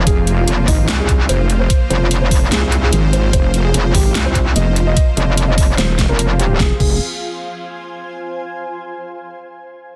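A half-time 4/4 pulse at 147 BPM drives this menacing, heavy wobble dubstep in F minor, cut from a longer piece and opening straight into the drop. A knocking electronic kick sits loudest in the mix, joined by a dubstep kit with a huge snare, metallic hi-hats and crash cymbal, both treated with studio reverb and a tape-like glow. Two wobble basses share the low end: a metallic, aggressive FM bass, distorted and bright with chorus and overdrive, and a mellower detuned sawtooth wobble bass with chorus and overdrive, both up front. A dark, boxy baby grand piano carries the melody with short sustain, audible action noise and delay, lending an intimate edge against the weight. Behind it all, a lush supersaw pad with phaser and a cloudy, evolving granular pad with built-in reverb pump to the sidechain in the background. The drop ends at 6.6 seconds as the harmony settles on F minor, and the granular pad lingers alone until 8.2 seconds in a dense, heavily limited master.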